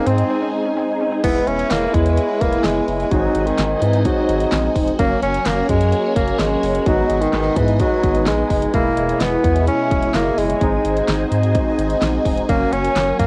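Nocturnal and driving, this synth-pop excerpt at 128 BPM in 4/4 puts an up-front, warm solo bassoon with light vibrato and tape echo on the melody over bold, detuned analog synth brass with chorus, phaser-swept string-machine violas holding sustained chords, a round, deep analog bass from 0.1 s and a layered pop drum kit with punchy kick, fat snare, handclaps and crash, while a very quiet, warbling unison pluck arpeggiates only until 1.2 s through a break that opens at 0.3 s, all with a cassette-tinged home-recording character in a moderate studio reverb.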